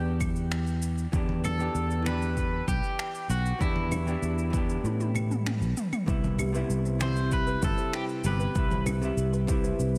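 Smooth and wistful, this sunset chillout excerpt moves at 97 BPM in a straight 4/4, shifting from an Em7 chord to Cmaj7 at 6.1 seconds. A slightly broken-up, twangy electric guitar carries the picked melody with subtle chorus and delay, while a dark, clean hollow-body jazz guitar supplies accompaniment through its own delay. Underneath, a bright, growly fretless electric bass sits up front and sustains its notes. The deep house drum kit brings claves, finger snaps, shaker and toms with overdrive and soft clipping on the snare, paired with a punchy, overdriven electronic kick and very quiet, band-limited congas. The kick drops out for a drum fill between 4.8 and 6.1 seconds, and a woody, ringing kalimba enters in the background with delayed arpeggios when the chord changes. Light reverb surrounds a dense, heavily limited modern master.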